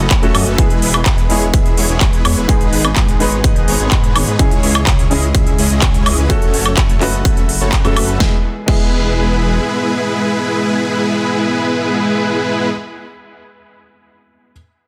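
A dense, thick supersaw riff leads this triumphant, anthemic festival progressive house excerpt at 126 BPM in E major, pumping with sidechain and trailed by dub echo, while a punchy, up-front electronic kick and a big-room kit with a huge snare, crisp hats, handclaps, woodblock and crash drive the drop that opens the clip. Beneath, a lush detuned saw bass coloured by chorus and an intimate baby grand piano with audible action noise also breathe with sidechain pumping, the piano carrying its own dub echo, over chords moving from F#m through E, G#m and C#m. The drums stop at 8.8 seconds and the bass soon after, leaving the supersaw until 12.7 seconds and the piano sounding alone to 14.5 seconds in a light digital ambience.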